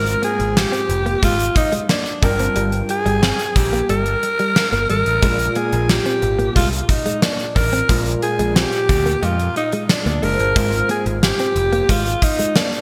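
Urgent and nostalgic, this excerpt of 1980s-style pop moves at 90 BPM in 4/4, with a breathy, raspy alto saxophone carrying the melody up front through delay, over a punchy picked electric bass, a gated drum kit with a fat snare and tight kick, a clean, scooped electric guitar riff with subtle chorus and delay, and a concert grand piano with audible action noise sitting in the background, all bathed in a lush hall reverb and bright digital production as the chords move from Fm through Gm7 and Bb7 back to Fm.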